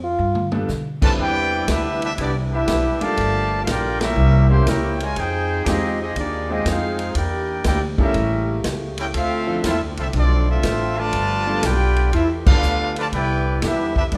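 A moderate large-studio reverb lends this swinging, joyful big band excerpt a roomy glow, as a close-miked, mellow solo trombone opens over woody pizzicato upright bass and a punchy, rolled-off vintage drum kit that enters with a fill. From 1.0 seconds a warm, vibrato-rich trumpet section carries the melody above a tight, clear trombone section second line. From 1.2 seconds a very quiet, distant saxophone section holds sustained chords, while an intimate baby grand piano with audible action noise accompanies until 11.6 seconds. Full-band accents punctuate the swing as the harmony moves through rich extended chords back to a closing major ninth.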